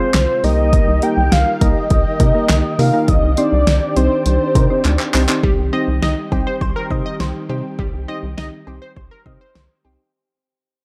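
A thick, dark unison lead with slapback echo carries the melody over the first 5.1 seconds of this melancholic, cool synth-pop excerpt in C minor at 102 BPM, backed by soft electric-piano-like keys, a warbling ensemble organ-string pad, a rubbery square bass and an up-front deep house kit with a fat snare and handclaps, before a drum fill leads into a fading second half where a bright analog pluck arpeggiates and a punchy, funky polysynth comp adds a second line in a dark, lightly reverberant mix.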